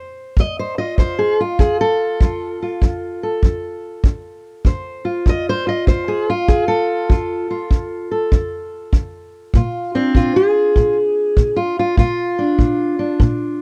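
Acoustic country blues with a soulful, rollicking mood, moving at 98 BPM in 4/4 with a swung eighth-note feel in F mixolydian. A dark, fingerpicked steel-string acoustic guitar carries the melody up front from F2 to Eb5, shifting from F to Bb at 9.5 seconds, while a tight, natural kick drum with brushes sits close alongside it. The sound is dry and close, like a 1970s studio recording, in this short excerpt cut from a longer piece.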